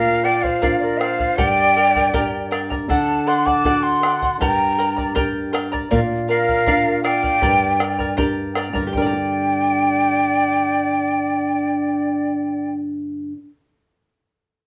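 Andean folk in an earthy, melancholic mood, this cut from a longer piece is led by a mellow, breathy cane quena with vibrato and a soft attack, sounding hollow and up front, while a second, straight-toned, tongued quena carries a quieter line beneath it. A shimmering, fingerpicked charango and a thumb-plucked flamenco guitar, warm and up front with audible finger squeak, supply the accompaniment, and a round bombo plays from 0.4 s to 9.3 s. Both quenas stop at 12.7 s, leaving charango and guitar to finish in a small, reverberant room heard from further back.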